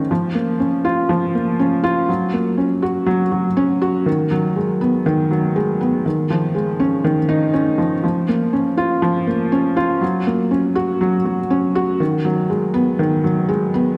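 A felt-muted upright piano plays alone for the full 14 seconds of this tender, hopeful electronica fragment at 121 BPM in F# major, its soft, boxy, intimate tone sitting up front with audible action noise, all set in a wet concert-hall reverb.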